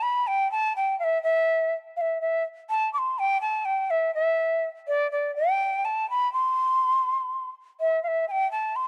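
Cassette-recorded at home in a small room with light reverb, this brief Andean folk fragment in A minor at 82 BPM in a straight 6/8 carries a festive yet melancholic mood, as a lone cane quena sits up front from 0.0 to 8.9 seconds, its hollow, airy tone touched with vibrato and soft attacks across a range of D5 to D6.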